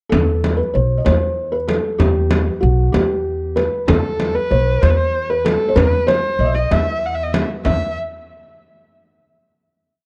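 This Persian modal ensemble piece in 6/8 is short and complete, with a hypnotic, longing mood. A felt-muted upright piano leads with an ornamented modal melody, its tone soft and dark through thick felt, with the action noise audible close by. Beneath it, a pizzicato upright bass with steel strings sits up front, woody in tone and keeping to simple root-and-fifth support. A large frame drum struck with hard hands plays a deep low-and-high stroke pattern that sounds as if it is in a large room. At 3.9 s a single bowed kamancheh enters, rich and expressive, playing the piano's line with its own ornaments, vibrato, portamento and soft attack. The dry, close sound recalls a 1970s-style studio session, and the piece closes on a final note at 7.7 s.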